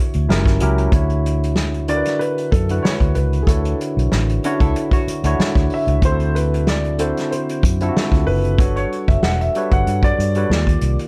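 A dark, mellow grand piano, with audible action noise and a slapback echo, opens at once beside a barky, lightly overdriven tine electric piano in this smooth, soulful neo-soul excerpt at 94 BPM in D major, with a gentle 16th-note swing. The piano carries the melody as a solo from 0.9 seconds, over a round, punchy foam-muted electric bass and an acoustic drum kit played with bundle sticks that sounds roomy and distant, while the harmony moves through lush chords such as Dmaj9 and Gmaj9#11. A clean, hollow-body archtop guitar adds a soft picked second line between 4.4 and 5.8 seconds.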